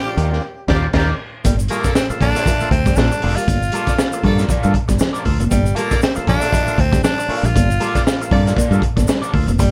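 Funk with a driving, cool feel and a swung sixteenth-note pulse, this excerpt opens on a break with a band accent before settling onto a Gm9 groove at 1.4 seconds, when a dark, clean electric guitar riff with subtle chorus and a grainy egg shaker join in the background. A raspy, bright tenor saxophone carries the melody over a round, foam-muted fingered bass and a crunchy, saturated breakbeat kit with a high-tuned snare and dark cymbals, while a twangy guitar at the edge of break-up adds wah-tinged accompaniment. An overdriven tonewheel organ with key click and slow rotary speaker supplies stabs, and a horn section with light vibrato plays a second line until 8.5 seconds, all in light reverb.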